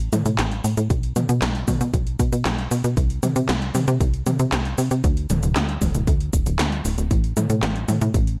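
A tight, punchy sequencer bass with a sawtooth edge and plucky, fast-decaying filter drives this romantic, nostalgic synthwave fragment at 116 BPM in straight 4/4 alongside 80s electronic pad drums with gated snare and toms, metallic hats, handclaps and cabasa, while a layered electronic kick enters at 0.9 seconds in a dry mix.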